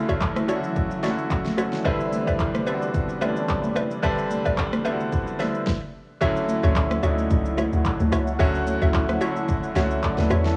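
Soulful, warm amapiano at 110 BPM in D major, cut from a longer piece, with a lightly swung groove and a lo-fi cassette haze over a small, dry room. A clear, intimate grand piano with audible action noise sits up front over a smooth, detuned sawtooth pad pumping in the background, while hollow, warbling square-wave plucks with chorus and analog delay add bouncy stabs, punchy overdriven deep house drums drive the beat, and thick-skinned congas sit behind them. The harmony moves from Dmaj9 to Cmaj9 early on, and after a brief stop at 5.7 seconds, the drop at 6.2 seconds returns to Dmaj9, with a hollow, percussive log drum bass entering shortly after at 6.6 seconds.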